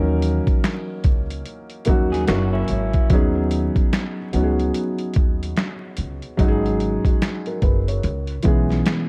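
Lo-fi hip hop with a reflective, nostalgic mood and a swung sixteenth-note feel, set in a dark production with vinyl crackle and light reverb. A soft, felt-muted upright piano with audible action noise and cassette-tape color sits up front over woody, growly pizzicato upright bass, while a gritty, pitched-down boom bap sampler-style kit brings a thumpy kick, medium-tuned snare, hi-hat and finger snaps. A slightly broken-up electric guitar through a small old amp adds a brief fingered second line with analog delay from 2.1 to 3.1 seconds, as the harmony moves from D#m7 through F#7, B69 and G#7sus4 to C#m7.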